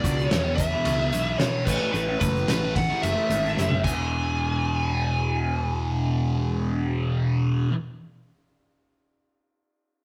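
Psychedelic rock with a kaleidoscopic, trippy mood, cut from a longer piece, where a picked fuzz lead guitar carries a compressed melody over a thick, double-tracked fuzz guitar riff that sits up front with a phaser on it. A round, punchy picked electric bass anchors the low end. A cloth-damped, thuddy drum kit with a fat snare, tight kick and dark cymbals plays a fill at 3.6 seconds before dropping out at 4.0 seconds, while a grainy tube shaker rattles in the background until 4.4 seconds, all in a rough rehearsal-room recording with stony reverb and saturation.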